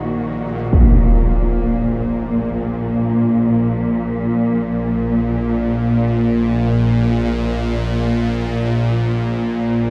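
A bright, nasal, sawtooth-edged drone sits up front in this ominous, desolate dark ambient fragment in free time, sustaining beneath a veiled, con sordino cello section whose dark Ebm/Bb chord gives way to Bb5 and fades out after a huge, bright impact at 0.7 seconds, while a barely audible bubbling, detuned filter texture lasts only until that hit, all set in a vast, echoing space.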